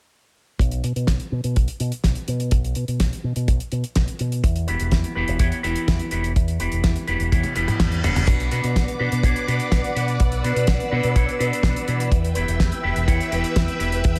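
A studio ambience frames this danceable, nostalgic italo disco excerpt, cut from a longer piece and set at 125 BPM in B minor with a straight 4/4 feel. A tight, dry kick and a damped 70s kit with a fat snare, hi-hat, crash cymbal and toms drive the groove, the kit touched by small room ambience and gated reverb. Up front, a warm fingered electric bass runs through an envelope filter from E1 to B2. At 4.7 seconds a dark, clean, picked electric guitar adds envelope-filtered stabs with digital delay as the harmony settles on E minor. A drum fill from 7.3 seconds and an electronic reverse cymbal from 7.5 seconds lead into the next section at 8.3 seconds, where a vintage string machine enters with swirling, warbling sawtooth chords that have a slow attack and a bright, phased, ensemble-chorus shimmer over B minor and E minor.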